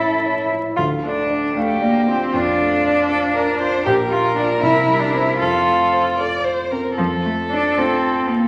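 A quick classical-period movement for piano trio in 6/8, this stormy, urgent fragment moves at 77 BPM in dotted quarters with a rubato feel, opening in D minor before turning to F major at 3.8 s. A single violin carries the expressive melody with rich, distant tone, vibrato and portamento, while one cello plays a smooth, even second line with vibrato close up front, and a baby grand piano supplies warm accompaniment. A wet recital hall reverb and vinyl crackle surround the trio, and a new section begins at 7.0 s.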